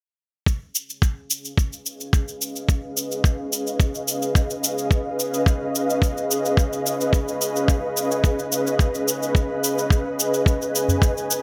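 A steady, straight pulse anchors this short, peaceful organic downtempo excerpt, with a gritty, thumpy electronic kick sitting up front from 0.5 seconds alongside a produced cabasa that carries the sheen of a large room. At 2.0 seconds an ethereal, airy pad fades in slowly, holding sustained chords built on a Db7 harmony with a mellow blend of detuned sawtooth, triangle and sine tones over a sub octave. The pad is thickened by ensemble chorus, its own built-in reverb and tremolo, and it breathes with sidechain pumping while a filter sweep moves through it across the passage. Just before the close, at 10.9 seconds, a small, close and dry udu adds a brief touch of acoustic percussion. A lush hall reverb and bright, 1980s-style digital production give the whole a gentle, glowing calm.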